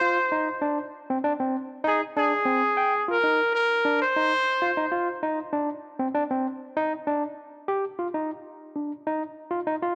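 A solo trumpet and a barky tine electric piano open this driving, intense afrobeat passage together at 98 BPM in a straight 4/4, cut from a longer piece. The trumpet carries the melody between Ab4 and C5 in a warm, pop-style tone with light vibrato, sitting up front yet sounding distant and roomy. Beneath it, the electric piano plays arpeggios from C4 to G5, lightly overdriven through a combo amp and also placed up front. The harmony moves through colourful chords such as Csus2, Abmaj7#11, Cm9 and Ebmaj7/D, with a brief chordless stretch at 8.0 seconds before settling on Ebsus2. The trumpet drops out at 5.2 seconds, leaving the electric piano alone until the close at 9.9 seconds, all within a small room with light reverb.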